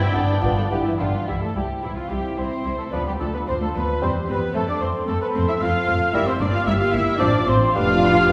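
Heard from further back in a reverberant scoring stage with a faint mains hum, this restless, dramatic excerpt from a quick classical-period orchestral movement in three, pushed and pulled with rubato, sets a veiled con sordino violin melody against a second violin line, a mellow cor anglais, a pure straight-toned flute ensemble and a very quiet dark clarinet, over lush muted violas, a light-vibrato bassoon, distant roomy French horn chords, smooth-topped cellos and up-front muted double basses that enter at 0.2 seconds.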